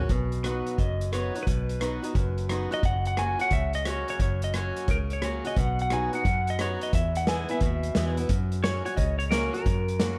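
Honky-tonk classic country with a nostalgic, heartfelt swing, where a bright, twangy pedal steel guitar enters at 0.4 s to carry a fingerpicked, compressed slide solo with volume swells over a boxy picked acoustic guitar, a dark, round foam-muted electric bass and an up-front vintage drum kit with a punchy kick, medium-tuned snare and rim clicks, all set in a moderate hall reverb.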